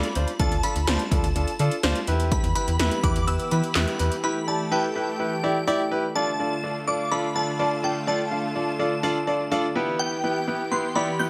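Synth-pop at 125 BPM in D dorian, cool and driving, this short cut from a longer piece moves between Dm and Em over a straight 4/4 pulse. A shimmering FM bell carries the melody high above, its dreamy, warbling tone spread by ensemble chorus and delay, while a clear, polished baby grand piano sits up front as accompaniment and adds a brief fill between 9.3 and 10.0 seconds. Punchy 80s electronic pad drums with gated snare, metallic hats and handclaps drive the opening alongside a snappy, slap-like FM bass, both dropping out after about 4 seconds. From 2.3 seconds a lush, thick unison pad of detuned sawtooth and square waves with an airy noise layer fills in sustained chords under chorus. Light reverb and digital ambience give the whole a sense of space as the piece shifts into its second section at 6.2 seconds.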